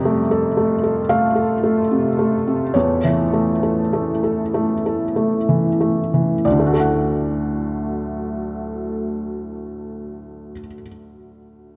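A moderate scoring-stage reverb and a dark, warm production frame this short, reflective and fragile fragment of neoclassical piano and strings, moving in a rubato 6/8 that slows through its first 6.4 seconds. A felt-muted upright piano sits up front as the accompaniment, soft and mellow with audible action noise, playing over chords of F, A/E and then D. Beneath it a deep, moody ambient pad holds sustained chords with a slow attack, detuned sawtooth body, sub octave, chorus and its own reverb until 10.5 seconds, while the piano continues to 11.8 seconds.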